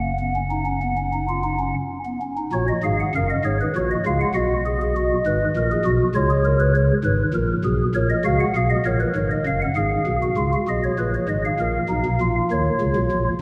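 Set in a church reverb with a long 2.9-second decay, this driving, serious baroque-style three-part fugue in F# major, cut from a longer piece, moves at 66 BPM in a straight 12/8 on a solo chamber organ whose up-front stopped flute, tuned to A4 = 436 Hz, sounds soft and hollow, with chiff and tremulant, across a span from F#1 to F#5, opening on a high F#5 before the middle section begins at 2.5 seconds and the opening material returns at 9.8 seconds.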